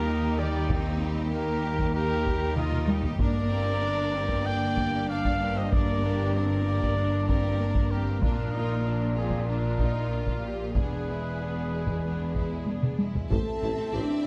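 A cut from a longer cinematic, epic orchestral film score opens with the full string body at once: bright, intense violins carry a lush, vibrato-rich melody while a second violin line, smooth viola accompaniment and a rich, distant cello and double bass foundation sit in the background. Mellow French horns hold sustained chords beneath a clear solo trumpet that punctuates the texture with stabs. At 0.7 seconds a close, dry taiko ensemble struck with hard sticks drives the heroic, relentless mood, adding drum fills along the way. The harmony moves from Eb through Gm and Bb to a tense E7, and at 13.3 seconds it arrives on Am as a vintage tuba briefly sounds a low note. A moderate scoring-stage reverb and a dark, warm production give the orchestra a broad, cinematic weight.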